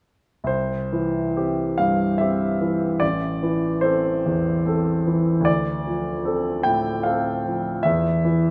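Classical romantic nocturne for solo piano in C major, tender and serene, moving in a rubato 3/4 at around 67-78 BPM. A clear, polished grand piano sits up front, ranging from A1 to G5 as the harmony passes from C to A minor to D minor seventh before the chords fall away at 7.8 seconds. The present, up-close piano tone is surrounded by a wet recital hall reverb, and the passage is cut from a longer piece.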